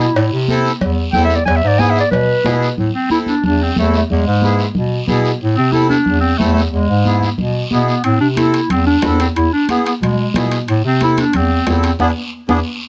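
A breathy clarinet opens this fiery, danceable cumbia excerpt in A harmonic minor, playing up front in a jazz style with subtone, vibrato, a soft attack and scooped notes, while a reedy, dark accordion with slow beating and a mellow bass clarinet with light vibrato enter at once beneath it. The straight 4/4 groove moves at a brisk 182 BPM as the harmony swings between Am and E, landing on E7 near the close. A raspy, saturated guiro and bright, high-tuned congas played with soft hands keep driving the beat throughout. Ringing cowbell and timbales drop out at 2.6 seconds and return at 8.0 seconds, and the band hits a final accent at 12.0 seconds. The sound is close and detailed, with light reverb around the players.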